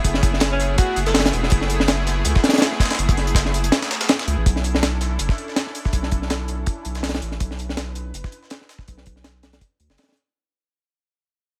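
A swung, raw, dark drum and bass groove cut from a longer jungle track pairs a dry, up-front reggae kit of tight kick, high-tuned snare and hats with a gritty, pitched-up sampler breakbeat of filtered hats and snare set in a large room, under a thick, saturated sub bass, a lush, detuned sawtooth pad with chorus, and a faint, glassy texture of drifting overtones that lasts until 4.5 seconds, when the fade-out begins and a filter sweep moves across the pad, while a jazzy alto saxophone briefly sounds scooped, lightly vibrato notes through dub echo from 0.5 to 1.2 seconds.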